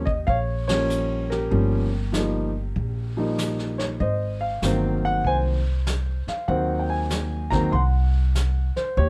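An up-front concert grand piano carries the melody in this jazz piano trio excerpt, its natural tone with deep bass reaching from Eb3 up to C6. The mood is playful and relaxed, moving at 97 BPM in 4/4 with a swung eighth-note feel. Beneath it, a pizzicato upright bass with steel strings sounds woody and thumpy, sitting close in the mix. A vintage kit played with brushes joins at 0.1 seconds, blending brushed and medium-tuned snare, hi-hat, a punchy kick and dark ride cymbal in a mid-forward studio-room sound with a rolled-off top. The trio hits a band accent between 0.6 and 0.9 seconds, and the harmony shifts from Eb9 to a rootless Ab9 at 4.0 seconds, framed by light reverb.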